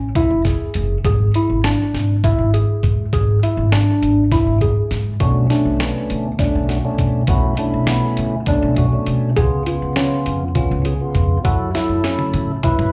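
Progressive instrumental band music in 7/8, tense and brooding, heard as a live gig through the venue's PA with club reverb: a worn, slightly out-of-tune tine electric piano with light overdrive, phaser and tape echo plays arpeggios over a woody pizzicato upright bass and a muffled, pitched-down sampler-style drum kit with a thumpy kick; a fat tonewheel organ with a slow rotary speaker joins at 5.2 seconds, and the drums play a fill at 11.7 seconds.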